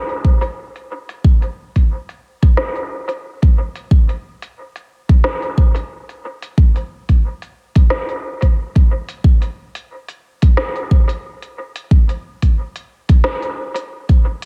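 The recording has a roomy, echo-soaked sound with light reverb, and both drum parts carry the ambience of having been re-recorded in a large room. This is a warm, earthy downtempo piece at 90 BPM in 4/4, with a 55% swing on the sixteenths giving it a loose, easy gait. A deep electronic kick sits up front and dominates the mix from 0.2 to 14.2 seconds. Beneath it, an organic-sounding electronic kit supplies a woody snare and crisp hi-hats from 0.1 seconds to the close, filtered darker and set well back, with a dub echo trailing its hits. This short cut from a longer piece stays in a single section throughout, built entirely from these two percussion parts.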